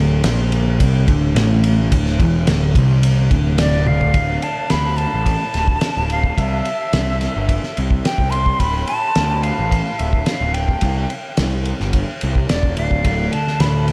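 A straight 4/4 pulse at 108 BPM drives this dark, trippy psychedelic rock passage in D minor, cut from a longer piece. A cloth-damped, thuddy drum kit sits up front with a tight kick, a fat snare, toms and dusky ride cymbals, its top rolled off. Beneath it, a fuzz-drenched picked electric bass punches through with overdrive. A bright, twangy twelve-string electric guitar opens on a clean, compressed, double-tracked riff coloured by phaser, then drops out after a drum fill at 3.9 seconds and returns at 13.1 seconds. From 3.6 seconds, a breathy jazz flute carries the melody with a crisp, chiffy attack and vibrato, trailed by a diffuse ambient delay, while the harmony moves from D5 through C, Dm and C. A moderate cathedral reverb soaks the whole mix in a dreamy haze.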